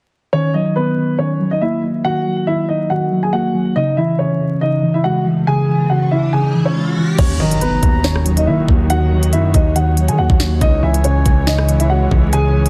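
Drill hip hop in Eb phrygian at 140 BPM with a half-time feel, this dark, menacing passage is cut from a longer piece. It opens at 0.3 seconds with a dark, mellow concert grand piano carrying the melody up front, its short sustain trailed by tape echo, over muted, felt-like synth keys whose soft, warbling tone is thickened by chorus, moving between Ebm7 and Dbm. An electronic riser builds from 5.3 seconds into an impact at 7.2 seconds, where the drill kit arrives with a knocking kick, sharp snare, crisp hats, rim clicks and crash, joined by a punchy, heavy 808-style bass with a fast attack and decaying tail. Veiled, con sordino studio strings hold bowed chords with vibrato beneath, while a distant, airy jazz flute adds a brief, expressive second line high up, also touched by tape echo. The dense, heavily limited master sits in digital ambience with a layer of vinyl crackle.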